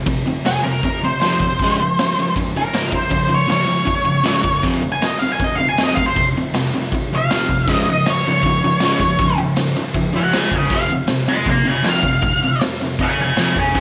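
A moderate spring reverb gives this gritty garage rock excerpt a rough, live-sounding space, with all three parts sitting up front. A crunchy, overdriven electric guitar opens at 0.0 seconds with a double-tracked, picked riff in its low register, circling through F5, Db and Fm chords in a straight 4/4 feel. The raw drum kit enters almost at once, its punchy kick, medium-tuned snare and crash cymbal sounding saturated and rolled-off at the top, caught in a pumping stone room. From 0.5 seconds an octave-fuzz lead guitar takes a dark, distorted, picked solo high above the riff. All three parts run together through to the cut at 13.8 seconds.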